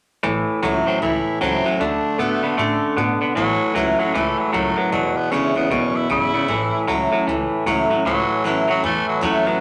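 A large studio's wet reverb frames this rollicking, retro rockabilly excerpt, swung and cut from a longer piece, with a twangy, compressed electric guitar riff sitting up front beside a bright, full-bodied picked acoustic guitar and a woody, thumpy pizzicato upright bass. From 0.9 seconds a raspy tenor saxophone takes the solo melody, gritty and growling with vibrato and scooped notes, over a progression that moves from A to D, back to A, then E7 and home to A.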